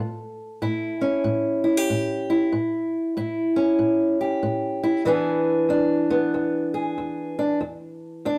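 A fingerpicked acoustic guitar opens at 0.0 seconds on an A7 chord, its old, ladder-braced body giving a dark, woody and boxy voice with the dull bite of aged strings. This is a swaggering, soulful blues fragment at 94 BPM in 4/4, with a loping swing on the eighth notes in A major. The guitar plays alone and sits up front, ranging from a low E2 up to A4. At 5.1 seconds the harmony moves to E7, and the brief passage ends at 8.4 seconds, cut from a longer piece. A moderate reverb from a large studio room surrounds the guitar, lending the live-in-the-room recording an open, natural air.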